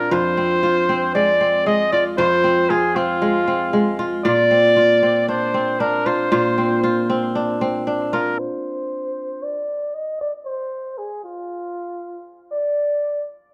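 A small, moderately reverberant room frames this short folktronica excerpt, and a low-pass filter softens its overall sound, giving it an autumnal, intimate mood with a gentle swing on the sixteenths. A bright, crisp kora sits up front, its fingerpicked arpeggios ringing through a delay over Fm and then Bbadd9. A clear flugelhorn carries the melody as a pop-style solo, punchy and touched with vibrato, yet given a distant, roomy quality by plate reverb and delay. At 8.4 seconds the harmony drops away and a filter sweep begins. The kora stops at 9.6 seconds, leaving the flugelhorn to play on alone until 13.3 seconds.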